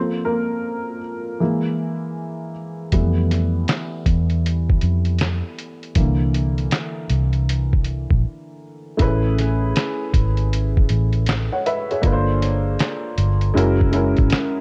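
Swung sixteenths at 79 BPM in 4/4 carry this mellow, nostalgic lo-fi hip hop excerpt, which opens on a dark, intimate, woody, slightly detuned upright piano with audible action noise and a low-pass filter; at 2.9 seconds a thumpy, pitched-down sampler kit of kick, fat snare, hi-hat and handclaps joins with a round, foam-muted electric bass, and after a brief break at 8.2 seconds the harmony moves from Fmaj9#11 and C9 to Amaj9, Gm11 and F#9, all in a dry cassette-tape sound.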